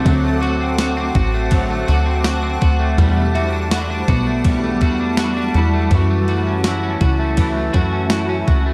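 Dream pop with a melancholic, hazy mood, cut from a longer piece, where a slightly broken-up slide guitar carries the melody through delay over twangy, near-break-up guitar arpeggios with analog chorus and delay, a clean background guitar shimmering with harmonic tremolo and ensemble chorus, a bright, blurred granular cloud pad, a punchy, plucky analog bass up front, and a thumpy, sampler-style 12-bit drum machine playing kick, snare, ride and tambourine, while a delicate, bell-like celesta drifts in at 3.3 seconds as the chords move from D7 through Em11 to F#m7, the whole mix sitting in light reverb.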